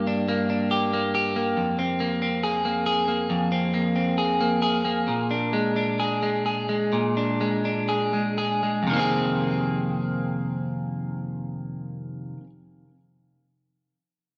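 Dream pop with a hazy, haunting mood, this short passage cut from a longer piece features a single bright, twangy electric guitar at the edge of break-up, picking arpeggios up front through lush chorus and digital delay, all set in a wet scoring-stage reverb as the pace slows from 1.6 to 8.9 seconds over chords moving from Gm through Fmadd11 and Bb7 before settling on Fm7 at 8.9 seconds, with the guitar stopping at 12.5 seconds.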